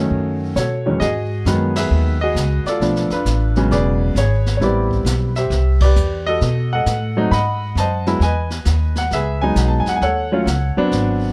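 Warm and playful, this brief excerpt from a longer jazz piano trio swings in E major at 133 BPM, with a clear, intimate grand piano carrying the melody over a woody, thumpy pizzicato upright bass, while a distant, roomy brush kit with dark cymbals, a high-tuned snare and a punchy kick sits lower in the mix under light reverb, the band hitting accents at 1.7 and 5.7 seconds as the chords move from Emaj9 through Bm7b5, E7 and Am9 to B7b9 and Emaj7.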